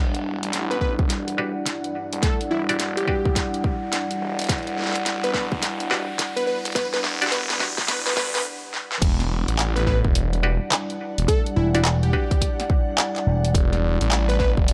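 A swirling, thick detuned saw bass runs through the whole clip, its phaser and tube saturation giving a gritty, playful glitch hop passage its bright, churning core. A punchy electronic kick sits up front beside a layered pop kit with a fat snare, handclaps, hats and crash. The drums swing on the sixteenths while a catchy plucky unison lead with dub echo and a muted, nasal clav stab through the groove, the clav pumping with sidechain compression. Underneath, a deep, moody analog pad holds an Em9 chord with subtle chorus, and an ethereal, airy pad drifts in the background with ensemble chorus and its own reverb. The first 9.0 seconds build up with an electronic riser, a filter sweep and a drum fill, then break off in a brief stop before the drop hits at 9.0 seconds. Within the drop, an amped slap bass with an envelope filter cuts in briefly from 11.6 seconds.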